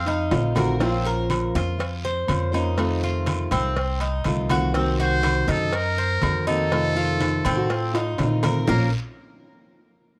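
Danceable and nostalgic, this Cuban son and guajira excerpt rests on a woody, thumpy upright bass up front alongside a buzzy, muted trumpet with light vibrato and scooped notes, which sounds only briefly at the start and returns as a jazz-style solo at 5.0 seconds. A metallic Cuban tres picks arpeggios over a boxy, ladder-braced acoustic guitar, while a bright, fingerpicked nylon-string guitar adds a classical second line in the background. Very quiet, low-tuned congas sit alongside tight, high-tuned cowbell and bongos, ringing agogo bells and timbales and a raspy guiro, with drum fills marking the groove in a dry, close 1970s-style studio sound touched by small room reverb.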